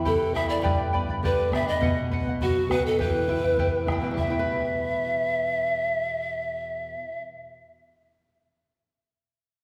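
A breathy, reedy bamboo pan flute carries the melody up front, its soft attack, touch of chiff and vibrato giving this wistful, earthy Andean folk fragment its voice. Beneath it, a bright charango with shimmering double strings, some doubled at the octave, and a fingerpicked flamenco guitar on fresh strings play the accompaniment at a steady 102 BPM in 2/4 with a straight feel. The bombo adds a round, vintage, band-limited pulse before dropping out at 4.5 s, leaving the strings and flute to carry on. The harmony moves in E minor from Em through G and B and back to Em, and the music shifts into a new section at 4.2 s. A wet concert hall reverb places the ensemble further back in the room, and the piece is cut from a longer performance, ending at 7.8 s.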